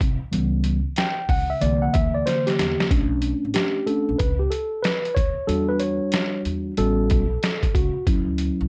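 A dark, lightly reverberant production frames this short, nocturnal slice of jazz-hop in B minor, moving at 93 BPM with a cool, swung 16th-note feel. Up front, a sampler-style drum kit sounds compressed, pitched down and muffled, with a thumpy kick, a medium-tuned snare and hi-hat carrying a tape-warm small-room character, and it plays a fill from 2.3 to 2.9 seconds, while a woody, plucked upright bass anchors the low end. A mellow, clean tine electric piano enters at 0.3 seconds and solos through plate reverb over jazzy chords such as C9, Bm9, A13 and Dmaj9.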